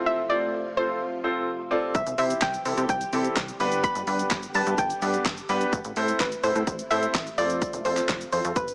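A polished grand piano sits up front in this euphoric, carefree dance-pop excerpt at 127 BPM in straight 4/4, its long-sustaining accompaniment pumping against the sidechain. Above it, a soft, round pluck carries the melody with a dark, gentle tone, thickened by chorus and trailed by dub echo. In the background, a silky vintage string machine holds mellow sustained chords through phaser and ensemble chorus, also pumping with the sidechain. At 1.9 seconds a punchy, funky analog bass with a fast, decaying filter pluck arrives alongside an overdriven pop kit of punchy kick, fat snare, bright hats, handclaps and shaker, with a very quiet, grainy tube shaker underneath. The chords move from F through C, G and A minor back to F, all wrapped in light reverb and digital ambience with a small-speaker character.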